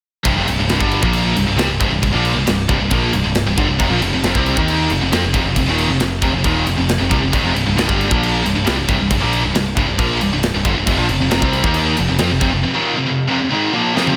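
A scooped, high-gain guitar riff and a tight metal drum kit with bright cymbals and a tight kick open this dark, heavy metal excerpt at 0.2 seconds, joined at once by an up-front, distorted guitar, a double-tracked, compressed overdriven guitar and a growly picked bass, all driving a straight 136 BPM in C minor over power chords on C and F. The bass drops out at 12.6 seconds, and a drum fill at 14.0 seconds closes the section, while a lush hall reverb gives the whole band a big arena sound.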